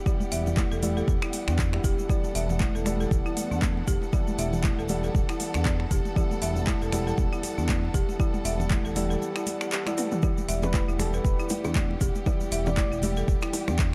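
An overdriven, deep electronic kick sits up front in this warm, spiritual afro house excerpt at 118 BPM in E minor, driving a swung groove with a deep house kit of metallic hats, snaps, claps and toms, bright congas, a grainy tube shaker, and smooth gliding synth bass, alongside woody hard-mallet marimba arpeggios, mellow felt-muted piano stabs and lush bowed strings holding an Em7 chord, while the kick drops out from 9.2 to 10.2 seconds before a drum fill, tight bongos enter at 10.2 seconds and a chorused, expressive synth lead sings briefly in the background from 10.6 seconds.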